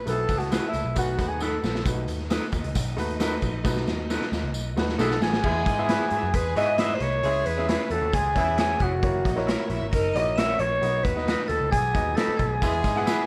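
Danceable and warm, this uptempo 1960s-style soul cut moves at 134 BPM in a straight 4/4, taken from a longer piece. A raspy, growling alto saxophone leads up front, taking a solo from 0.0 to 1.9 seconds and returning at 5.0 seconds to carry the melody with vibrato and a roomy, distant edge. Beneath it, a raw garage drum kit with a punchy kick and gritty, saturated character drives throughout, adding fills, while a round, foam-muted picked electric bass with tube saturation anchors the low end and a woody upright piano with short sustain keeps the accompaniment going. In the background, lush bowed strings and a horn section with light vibrato add second lines, a twangy, slightly broken-up electric guitar with tape echo plays stabs, and a jingly tambourine fills the early bars. From 5.0 seconds a sparkling glockenspiel with hard plastic mallets rings out high above, as the harmony moves from E through C#m and F#7 to B before landing back on E, all set in a moderate studio reverb.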